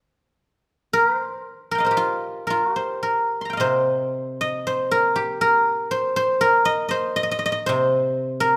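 In a free, rubato 2/4 hovering around 54-60 BPM, this contemplative, elegant fragment of traditional Chinese music features a solo guzheng plucked with fingerpicks, its ringing, silvery tone sitting up front and ranging from C3 to C6. A moderate recital-hall reverb of about 1.5 seconds surrounds the instrument, and at 3.6 seconds the short passage moves into a new section that carries it to its close at 8.6 seconds.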